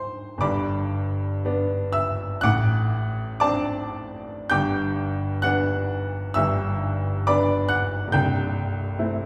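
A clear, natural baby grand piano carries this brief romantic nocturne alone, its short-sustained notes reaching from the deep bass up into the high treble with a tender, nostalgic feel and a freely breathing rubato pulse. Set up front yet heard from further back in a recital hall with a wet reverb, the piano moves from G through D7/A and back to G before settling on Am/C near 8.2 seconds, as the passage is cut from a longer piece.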